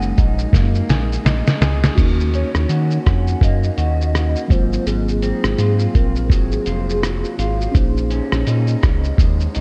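A round, dark analog bass and a muffled, thumpy lo-fi sampler-style drum kit sit up front in this hazy, laid-back bedroom-pop excerpt at 83 BPM with a swung sixteenth feel, the drums playing a fill from 0.5 to 2.0 seconds before a soft synth lead solo begins at 2.0 seconds. A mellow tine electric piano colored by cassette tape and a slightly broken-up electric guitar through a small old amp with subtle chorus and vibrato carry the chords from Gb69 through Ebm7 and Ab13 to Bbm11. In the background, a warbling, detuned nostalgic lead with ensemble chorus and analog delay sings its melody until 8.1 seconds, all wrapped in light reverb.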